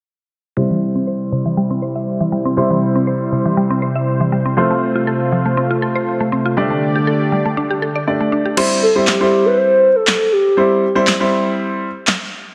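In straight four-four time, this carefree, upbeat dance-pop passage opens on a clear concert grand piano, a smooth detuned sawtooth pad and a round, woody FM pluck spinning delayed arpeggios, all carried through a filter sweep over a simple chord progression. At 8.6 seconds a punchy analog drum machine arrives with crash cymbal, handclaps and snare as the pad and pluck drop away, and at 8.8 seconds a hollow, clarinet-like square-and-triangle lead sings a short, mellow melody with vibrato, chorus and delay. The piano and drums sit up front in a lush hall reverb, and the piece is cut from a longer work.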